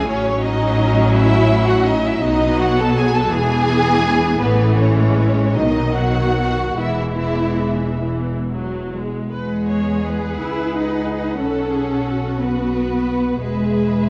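A close, expressive cello section stands out in this serene, lyrical slow romantic movement for string orchestra, its bowed lines carrying soft attacks, vibrato and portamento with a touch of transformer saturation. Above it, a distant violin section sings the melody with a smooth, even tone, while a second violin section adds an intimate second line with tender, soft-edged phrasing. A lush viola section supplies the accompaniment with a focused sound and silken top, and a double bass section anchors the low end with a rich, tube-saturated weight. The music unfolds in 6/8 with rubato, moving into a new section at 9.3 seconds and coming to rest on an E chord at 13.4 seconds. The whole passage, cut from a longer piece, sits in a reverberant scoring-stage space and is colored by the worn, warbling pitch drift of old cassette tape.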